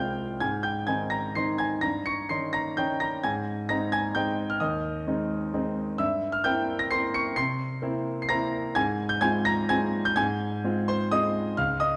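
Wistful and nostalgic, this classical piano waltz in F minor moves at 129 BPM in 3/4, with uneven beats and rubato giving it a freely breathing pulse. A solo concert grand carries the whole passage, its tone clear and smooth with a deep bass and a vintage character, sitting up front across a span from C2 to Db7. A wet recital hall reverb surrounds the piano as the harmony turns from Ab through Eb7/G and C7/G to settle on Fm/Ab at 8.8 seconds, in this short section cut from a longer piece.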